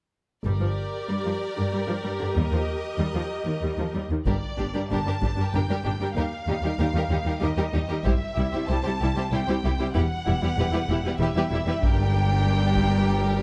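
In a straight 3/4 at 96 BPM, this epic, relentless cinematic orchestral passage in G minor, cut from a longer piece, opens at 0.5 seconds with distant, intense violins, a close, focused viola section, a clear cello section bowing with light vibrato and a smooth, even double bass section, the violins, violas and basses adding lush vibrato as the strings carry the harmony through Gm and Eb, before a taiko ensemble struck with heavy sticks in a live room and a high violin melody with a smooth top enter at 4.3 seconds, pressing on through C and Em back to Gm under light reverb and close, detailed microphones.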